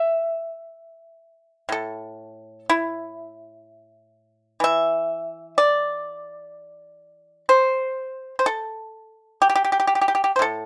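Chinese traditional solo plucked-string music, this short excerpt features a lone pipa in a contemplative, elegant mood. The playing is rubato, letting phrases breathe freely over a slow pulse in a mode with a classical, pentatonic flavor. Played with fingerpicks, the pipa sounds acoustic and percussive, with a dry, up-front presence and a warm body across a range from A2 to E5. Light reverb gives a touch of space around it, though the overall sound is that of a rough home demo mix. The instrument carries the whole passage by itself from 0.0 to 10.7 seconds, a fragment cut from a longer piece.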